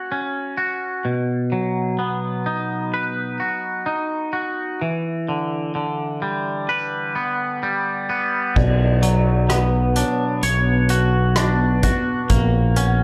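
A roomy large-studio sound frames this cathartic, cinematic post-rock excerpt at 64 BPM in B harmonic minor. It opens with a twangy, clean electric guitar playing arpeggios up front through lush chorus and slapback echo. At 8.6 seconds a growling, overdriven fingered bass arrives up front with a distant soft-mallet drum kit of dark cymbals and punchy kick, while a ringing vibraphone with fast motor vibrato adds airy arpeggios in the background, and from 10.0 seconds a deep, moody sawtooth pad with a sub octave sustains chords beneath harmonies such as Bmadd9 and F#/A#.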